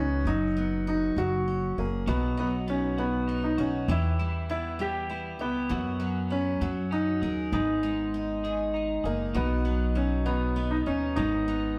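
A small band plays together in a stone room whose damp reverb gives this short, romantic pop fragment an intimate, heartfelt glow. Up front, a grand piano with a mellow, short-sustained tone carries the melody in 6/8, while a picked steel-string acoustic guitar with fresh strings fills in the accompaniment, the odd finger squeak adding a human touch. An upright bass, played pizzicato, sits close with a woody, thumpy, dark low end. At 2.1 seconds a clean, compressed twelve-string electric guitar joins with bright arpeggios that add shimmer to the texture. The harmony moves through tender suspended and added-ninth colours, settling on a G#madd9 near the end as the clip breaks off at 11.8 seconds.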